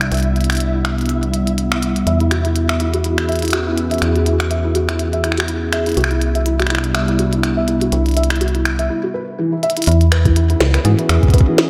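Set in a big arena sound with a lush hall reverb, this glitchy, playful IDM excerpt with a light swing layers a warbling, nostalgic tape-like pad holding sustained chords through a filter sweep and phaser, an up-front metallic FM bass with tube saturation, an overdriven glitchy kit of finger snaps, clicky hats and a tiny snare, and a flickering grainy texture in the background, while a felt-muted upright piano brings soft, boxy arpeggios with 12-bit grit and tape echo from 2.1 s, and after a break at 8.9 s and a drum fill, an overdriven electronic kick arrives at 10.3 s.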